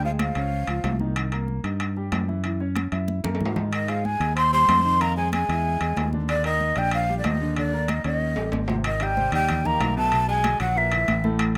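A rough home demo mix in a small, moderately reverberant room carries this sunny, sophisticated Afro-Cuban jazz fragment in a straight 4/4. A breathy, mellow silver flute leads up front, with a clear tenor saxophone as a background second line with light vibrato and scooped notes; both drop out between 1.0 and 3.7 seconds. Underneath, a punchy fingered electric bass sits forward beneath a smooth vintage grand piano, while high-tuned, dry congas played with hard hands keep to the background alongside ringing metal-shell timbales, with drum fills at 3.1 and 8.4 seconds, the second leading into a new section at 8.8 seconds.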